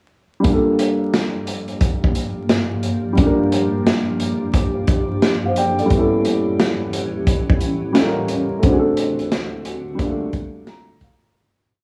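A slumped, off-grid hip-hop beat with swung 16ths at 88 BPM drives this brief, nostalgic and hazy lo-fi hip hop piece in G minor, where a gritty, saturated breakbeat kit with a tight kick sits up front beside a woody, mellow upright piano repeating rootless held chords like a sampled loop, dotted with grace notes; a cloudy granular pad enters at 1.4 seconds with detuned, evolving sustained chords, vinyl crackle colours the small room, and the piece fades out from 8.6 seconds as the piano plays a closing fill at 10.3 seconds.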